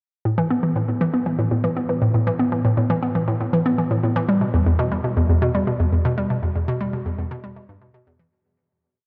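A lone hollow square-wave pluck opens this short ambient piece at 0.3 s and carries it alone to its close at 8.3 s. The tone is bouncy and vintage, with a noise layer, a fast attack and a short filtered decay, while chorus gives it a warbling shimmer and an analog delay trails each note. It sits up front, cycling through a repeating five-step sequence in the low-to-middle register, from E2 to B3, that drifts against the 4/4 bar at a straight 119 BPM, tuned to A4 = 443 Hz. Around it blooms a drenched cathedral reverb with a 5.6-second tail, placing the sound in a vast, echoing space that feels expansive and cosmic. A fade-out begins at 5.6 s and carries the loop away by the end.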